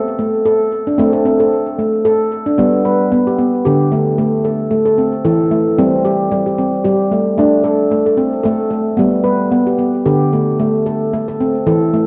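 A ringing, bright handpan of nitrided steel carries this gentle, hypnotic world-meditative fragment alone, close-miked and up front, its sharp finger strokes trailed by tape echo in a lilting, swung 3/4. After an opening with unaccompanied tones, the harmony settles at 2.6 seconds into a cycle of G, Am, C5 and D5 that returns to G and Am. The whole sits in a wet concert-hall reverb on a worn, warbling cassette whose pitch drifts and whose top end is dulled.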